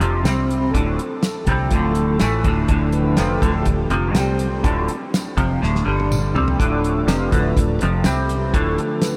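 Soaked in a huge ambient reverb, this dreamy excerpt of trippy, hypnotic psychedelic rock moves at 123 BPM in D dorian, with a bright, twangy clean electric guitar riff, flanged and double-tracked, sitting up front over a round, foam-muted fingered bass and a damped 70s drum kit with a tight kick. A mellow tonewheel organ carries sustained chords through a slow rotary speaker with audible key click and takes a solo throughout, while a jingly tambourine sits distant in the background. The harmony circles between Dm and C5 with a brief turn to G5, and a drum fill arrives at 5.6 seconds.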